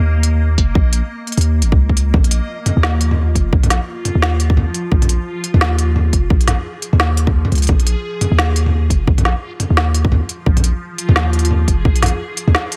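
A deep, sine-like 808-style bass and a reversed, swelling texture open this heavy, tense half-time drum and bass excerpt at 0.0 s, sitting on a Bb5 chord at 173 BPM in 4/4 with a swung 16th-note feel. The bass is long and mellow, with a fast attack that decays and sits up front, moving between F1 and Eb2. Behind it, the detuned, triangle-toned texture drifts dreamy and bright, its soft attack and long release blurred by granular grain and built-in reverb, spanning F3 to Eb5 at a much lower level. An organic electronic drum kit arrives at 0.2 s with a woody snare, crisp hats and toms, tape-warmed and re-recorded in a small room, while a hard-clipped electronic kick punches in at 0.6 s and stays prominent in the mix. The overall sound is dry, close and loud, and the passage is cut from a longer piece.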